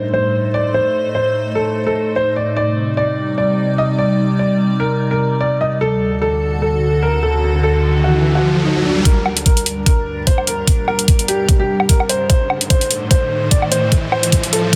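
Heavy wobble dubstep at 148 BPM with a half-time, lightly swung feel in G harmonic minor, this menacing fragment opens with a dark, boxy baby grand piano melody carrying tape echo and audible action noise over an evolving, morphing wavetable pad with chorus, phaser and sidechain pumping, moving through Adim, Cmadd9 and D chords before an electronic riser enters at 7.2 s and a knocking, up-front electronic kick enters together with bright hi-hats and woodblock at 9.1 s for a build-up over Gm and Adim, all within a dense, heavily limited master and a moderate plate reverb.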